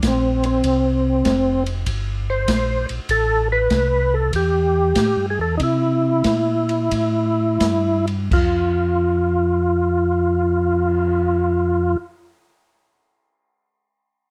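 A swung eighth-note feel in 4/4 at 83-98 BPM carries this bluesy, soulful soul jazz organ trio excerpt, where a mellow, round tonewheel organ holds down the bass through chorus vibrato and a slow rotary speaker, an acoustic jazz kit with dark cymbals and a boomy kick plays in a small room until 11.1 seconds, and a gritty, overdriven organ with second-harmonic percussion sings the melody up front over chords moving from C5 to Am7 and C7, the tempo slowing between 3.1 and 8.3 seconds under light reverb.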